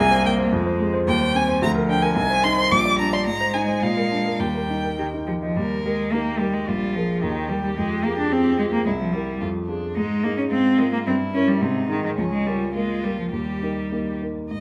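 Close, detailed microphones in a moderate recital hall capture this lively, spirited piano trio passage from a quick classical-period movement in E-flat major, taken at 109 BPM in 2/4 with a rubato feel. The violin carries the melody with vibrato and expressive portamento, while the focused cello sings a second line and the dark, mellow baby grand supplies the accompaniment. The phrase is stated twice, the second time beginning at 5.6 seconds and settling back on an E-flat chord at 13.3 seconds.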